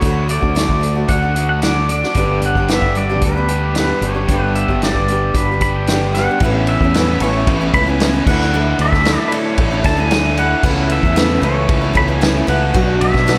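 A bright, twangy pedal steel guitar carries the melody with volume swells and analog delay over a jangly, open-road folk rock and heartland rock groove at 113 BPM in A major, backed by a picked steel-string acoustic guitar with slapback echo, a scooped, double-tracked overdriven electric guitar riff sitting in the background, an up-front picked electric bass, and a punchy, roomy vintage drum kit with dark cymbals, while a lush, very quiet bowed string section adds sustained chords from 6.4 s, and the mix carries a big arena sound with recital hall reverb in this short cut from a longer piece.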